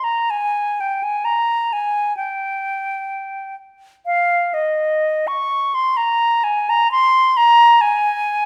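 A pure, straight-toned concert flute sings alone and up front in this nostalgic, lyrical classical fragment, its tongued notes moving freely in a rubato three-beat lilt across the upper range while a moderate recital-hall reverb lends the 8.5-second passage a gentle sense of space.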